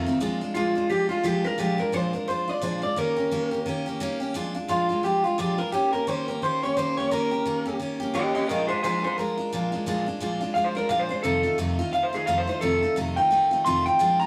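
Upbeat and retro, this swung rock excerpt at 174 BPM in Bb mixolydian pairs a bright, full-bodied picked steel-string acoustic guitar, fresh-stringed with audible finger squeak, against a twangy, slightly broken-up lo-fi electric guitar melody through a small old amp that enters at 0.5 seconds, both up front in a live one-room band sound with moderate large-studio reverb as the chords move through Bb7, Eb7 and F7.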